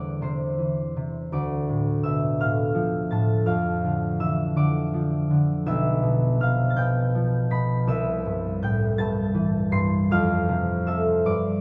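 Dreamy and serene, this classical fragment from a longer piece features a solo concert harp in 6/8 with a free, rubato feel, its bright, thumb-plucked, ringing notes spanning from B1 up to C7. The harmony drifts from C/E through Dm, Dm/F and G7/B to C before settling on F. The harp sits up front within a dark production and a lush church reverb whose tail lingers for 3.9 s.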